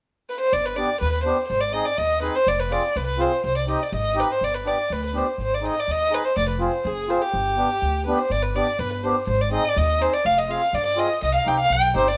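A straight 2/4 pulse at 124 BPM drives this bittersweet, soulful klezmer piece in G phrygian dominant, cut from a longer performance. A single bowed violin carries the melody from 0.3 seconds, sitting up front with a dark, intimate sul tasto tone, soft attack, light vibrato and a smooth top. Upright bass enters at 0.5 seconds with woody pizzicato on steel strings, while a mellow, reedy accordion with slow beating joins at 0.8 seconds to supply mid-forward accompaniment. The harmony moves through G, Ab, Fm and Cm as the band plays live together in one room, wrapped in moderate studio reverb, and the opening theme returns at 8.3 seconds.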